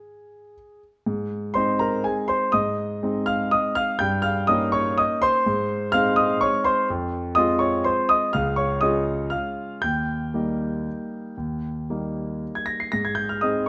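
A concert grand piano opens this short classical waltz on its own, with a brief unharmonized pickup before the music settles into A-flat major at 1.1 seconds. Elegant and playful in mood, it moves in 3/4 time with a flexible rubato feel, the tempo drifting between 108 and 131 BPM. The piano spans from its deep bass up to a high C7 and has a warm, natural tone, sitting up front in close, detailed sound. The harmony passes through E-flat seventh, F minor, D-flat and E-flat before coming home to A-flat at 12.9 seconds. A moderate recital-hall reverb surrounds the instrument, and the passage is cut from a longer piece, ending at 13.7 seconds.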